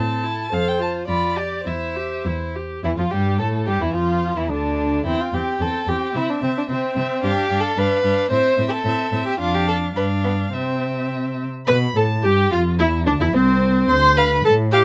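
Up front, a dark, close cello carries the bass with vibrato and expressive portamento, beside a woody second violin that plays the second line. This is a lively, cheerful classical-period string quartet movement in C major at 109 BPM in 2/4, taken with rubato. A clear, intense viola fills out the accompaniment with a smooth top, while a warm, distant first violin sings the melody with vibrato and sliding portamento, all captured by close, detailed microphones with light reverb in a passage cut from a longer piece.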